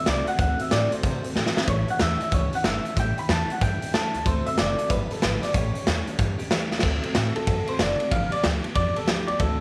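A swung 4/4 groove at 186 BPM drives this rowdy, retro rockabilly excerpt, cut from a longer piece, with a raw garage drum kit sitting up front: a punchy kick, medium-tuned snare, hi-hat, ride and crash, all saturated and gritty with a rolled-off top and a pumping stone-room sound. The upright bass plucks gut strings for a woody, thumpy low end, while a picked dreadnought steel-string acoustic guitar picks out full-bodied accompaniment in the background. Over them, an electric guitar through a small old amp carries the melody with a twangy, slightly broken-up, compressed tone and tape echo. The changes move through D7, A7 and G7. A drum fill lands at 1.4 seconds and again just before 6.8 seconds, when the music shifts to a new section and the electric guitar takes a clean solo to the end. The overall sound is dry.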